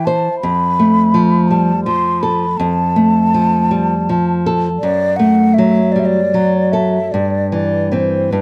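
Close, detailed miking and light reverb frame this melancholic, yearning romantic duo in a slow, rubato 12/8 at 48-56 BPM, where an airy, hollow concert flute with soft attacks and vibrato carries the melody over a dark, small-sounding fingerpicked nylon-string guitar that sits up front, the brief cut from a longer piece moving through Fadd9, Em11/F# and C/G.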